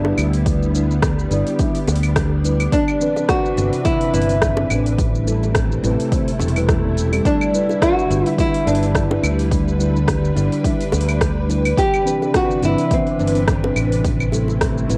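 A hazy, homespun cassette sound with moderate spring reverb wraps this smooth, blissful sunset chillout excerpt in G major, moving at 106 BPM with a swung sixteenth-note feel over chords from G6 through Cmaj9 and Am7. A warm, fingerpicked nylon-string guitar carries the melody up front through analog delay until 13.7 seconds, over a mellow tine electric piano with tape echo, a silky, warbling string machine holding sustained chords, and a round, dark fretless bass with analog chorus. An overdriven, punchy electronic kick and a deep house kit with metallic hi-hats, claves, rim click and shaker drive the groove, while tight, high-tuned bongos sit close and dry in the background.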